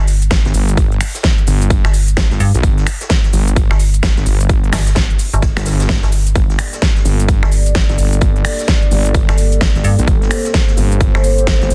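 A saturated, wobbling bass sits up front in this gritty, swaggering bass house excerpt, a short cut from a longer piece, moving between G1 and Bb1 with chorus, overdrive and sidechain pumping. Alongside it, a metallic FM bass with fast, decaying notes spans G1 to G2 and pumps against a punchy, layered electronic kick, all at 129 BPM in 4/4 with a 62% swing on the 16ths. A big-room dance kit adds finger snaps, crisp hats, shaker and a huge snare given soft clipping, while a very quiet acoustic big-band kit with a medium-tuned snare and hi-hat sits far in the background. At 6.4 seconds a dark, moody analog pad enters with slow-attack chords between Bb3 and D5, carrying subtle chorus and its own sidechain pumping over a G minor add9 harmony. The whole track has a dense, heavily limited modern master in a digital ambience, tuned to A4 = 445 Hz.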